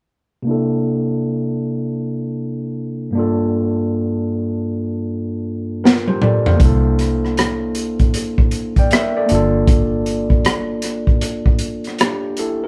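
A gritty, barking overdriven tine electric piano, pushed through a combo amp and run through a filter sweep, opens this soulful, introspective neo-soul R&B excerpt at a swung 78 BPM, alternating C13 and Gm9 chords before a crunchy breakbeat kit with a punchy kick and high-tuned snare arrives with a fill at 5.8 seconds and a dark, round, foam-muted fingered electric bass joins at 6.6 seconds, all in a lightly reverberant room.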